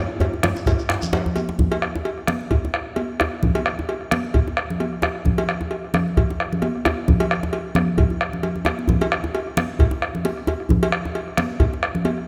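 West African traditional drum ensemble music, powerful and earthy, moves at 132 BPM in 4/4 with a light swing on the sixteenths, cut from a longer piece and opening with a drum fill before the main groove settles in at 1.6 seconds. A deep, dark bombo and ringing, high-tuned congas struck with hard hands sit up front, alongside a close, dry djembe played with soft hands and a metallic, compressed, saturated cowbell. A second, medium-tuned djembe in a live room and a grainy, mellow shekere appear only briefly near the start, another fill arrives at 8.3 seconds, and a moderate stage reverb surrounds the ensemble.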